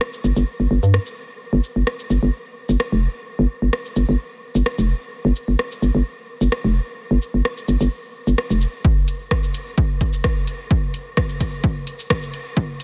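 A straight 4/4 pulse of overdriven analog drum-machine hi-hat, rim click and shaker drives this quirky, sparse minimal techno excerpt, joined at 0.2 s by a prominent, hollow and bouncy FM bass with a fast attack, decaying notes and sidechain pumping, until the bass stops at 8.7 s and a punchy, up-front electronic kick with its own grit enters at 8.8 s for a filter-sweep build-up in a lightly reverberant, high-passed mix.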